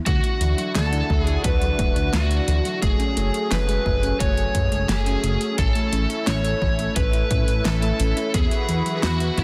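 Nocturnal and driving, this synthwave excerpt sets an up-front overdriven lead guitar with delay over a lush, detuned unison pad and glossy chorused bass that both pump with the sidechain, while a round, tine-like synth pluck arpeggiates in the background with a cassette-tape haze and a punchy analog kick and fat-snare pop kit keep time through a Dadd9, F#madd9, A and Esus2 progression in a dense, heavily limited mix.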